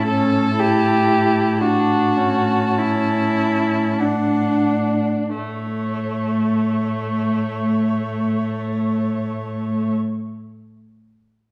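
Classical chamber music, this tender excerpt from a slow romantic movement for string quartet moves in a rubato triple metre, with a veiled, close first violin singing the high melody with vibrato and a soft attack over a muted second violin's inner line, a dark-toned viola accompaniment with light vibrato, and an up-front cello holding a low A in the bass. The music slows through its opening 5.4 seconds over A7 and D/A harmonies before settling onto A as a new section begins, set in a moderate recital hall reverb.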